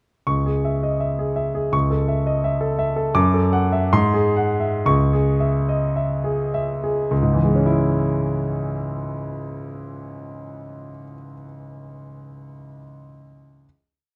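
A grand piano opens at 0.3 seconds with broad broken chords, its deep bass and natural tone placed up front in a stormy, brooding romantic character piece. A second figure in the upper hand sits above those chords, and the playing moves in a free, rubato duple metre. From 2.4 seconds the pace slows, and the harmony darkens through a dominant seventh before settling back on the home minor chord. At 7.1 seconds a final chord takes over and rings into a moderate studio reverb. The production is dark and warm, giving this short, complete piece a weighty, intimate sound.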